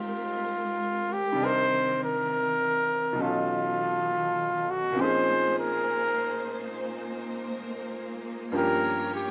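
Jazz ballad excerpt with a gently swung, wistful and intimate feel, where a mellow, breathy trumpet carries the up-front solo melody with scooped notes over a brilliant, woody upright piano accompaniment and a dark, lush bowed string section holding sustained chords with expressive vibrato, set in a moderate studio reverb and moving through rich harmonies such as Abmaj9 and Bbm11.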